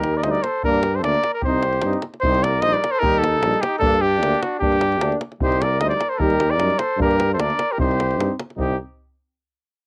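A fiery yet bittersweet Balkan brass band piece opens with a warm cornet carrying the melody up front, its light vibrato and classical phrasing colored by a cassette tape tint. Beside it from the start, a mellow trumpet with a smooth top plays a second line in the background. Below them, a roomy, distant tuba holds the bass up front, while a tight, close and dry davul drives the swung 2/4 pulse. At 0.2 seconds, a clear trombone and a mellow euphonium enter in the background with accompaniment parts, both with light vibrato in a classical style. The harmony circles through Eb, Gm and Cm, and the whole cut has the light reverb and homely character of a home recording on cassette, taken from a longer piece.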